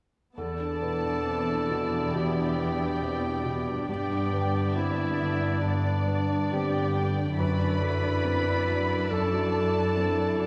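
Cinematic, emotional film score for orchestra in E minor at 69 BPM with a rubato feel, bittersweet and longing, cut from a longer piece and moving through Em7, G and Dadd9/F# in a wet concert hall. Muted violins carry a veiled, con sordino melody with vibrato, joined by a second, close and lush violin line and a clear, distant-sounding solo clarinet placed up front. Beneath them, muted violas and a lush cello bass sit with a warm grand piano, its action noise audible, and a mellow, ringing fingerpicked harp playing arpeggios in the background, all from 0.4 to 10.5 seconds.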